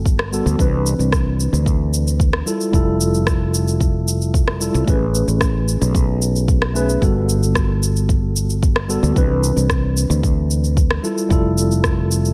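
A mellow, clean tine electric piano, filtered and touched with delay, opens this blissful, sunny sunset chillout excerpt alongside a growly, punchy fretless electric bass, both up front. From 0.1 seconds a deep, layered, tape-warm electronic kick and a produced shaker and rim click settle into a straight 4/4 at 112 BPM. Lush major-ninth chords drift from Gmaj9 through Cmaj9, Fmaj9 and Amaj9 under light reverb and digital ambience.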